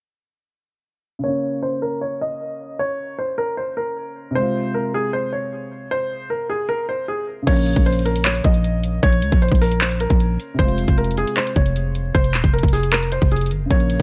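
Dry and close, this eerie, melancholic trap excerpt in a half-time feel opens at 1.2 seconds with a worn, intimate grand piano melody, its action noise audible through a low-pass filter and digital delay, over a dark, mellow concert grand accompaniment while a filter sweep runs until 7.5 seconds, when a growling, buzzy 808-style bass and an overdriven electronic drum kit of hard-clipped kick, bright hi-hats, handclaps and crash cymbal arrive up front.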